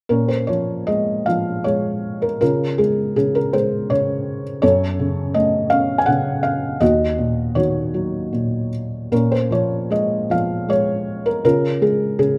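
Reflective and dark, this short classical excerpt for solo piano unfolds lyrically in Bb minor, moving in 3/4 at roughly 76-84 BPM with a flexible, rubato feel. A felt-muted upright piano carries the whole passage from 0.1 to 12.4 seconds, ranging from Eb2 up to Ab5. Its tone is soft and mellow, with thick felt giving the notes a short sustain and a vintage, intimate character, while audible action noise adds a close, human texture. The harmony drifts from Bbm7 through Db, Gbm and Ebm before returning to Bbm7 and then Db near 11.4 seconds, and the passage itself is cut from a longer piece. Close, detailed microphones place the instrument up front, and a light reverb lends just a touch of space around its smooth, muted voice.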